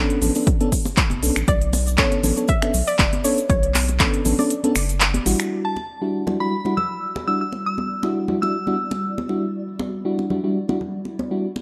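Warm and hypnotic, this deep house excerpt at 119 BPM in 4/4 swings gently in E dorian. It opens on Bm9 with a soft round pluck melody, dark chorused FM electric piano stabs pumping through a low-pass filter and digital delay, a deep wave-folded analog bass, and an up-front kit of finger snaps, handclaps and smooth hi-hats over bright high-tuned congas and a grainy cabasa, with an overdriven punchy electronic kick joining half a second in. The kick falls away by 4.1 seconds, and at 5.5 seconds the harmony shifts to Em9 as a hollow, flute-like pad with a filter sweep settles in the background and a glassy, crystalline synth bell with vintage 12-bit grit carries the melody, the mix sitting in light digital reverb with faint lossy artefacts.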